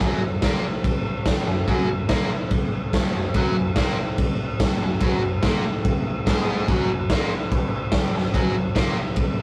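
A biting, overdriven electric guitar riff and a raw garage drum kit kick off together in this rowdy, raw garage rock excerpt, the picked, double-tracked guitar sitting up front in the low register while crash cymbal, punchy kick and a medium-tuned snare drive a straight 4/4 beat. The drums sound gritty and saturated with a rolled-off top, ringing in a bright stone room, and the whole rough rehearsal-room recording carries light reverb and a warm saturation. The guitar stops at 9.0 seconds and the drums at 9.3 seconds, the clip cut from a longer piece on a single F# chord.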